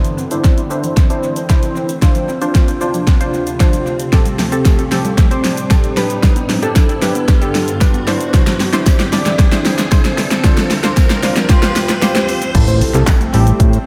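A punchy, up-front pop drum kit drives this confident, bittersweet dance-pop excerpt in a straight 4/4, with handclaps, shaker and crash among its layers, while a funky polysynth comp and a shimmering ethereal pad pulse together through sidechain pumping and a filter sweep, and a very quiet woody mallet-like pluck plays arpeggios. A background riser builds to an impact, and a faint jingly tambourine joins at 4.1 seconds. At the drop at 12.5 seconds a fat, saturated analog bass arrives, followed at 12.7 seconds by a dark, bold unison lead melody set back in a light, echo-heavy mix.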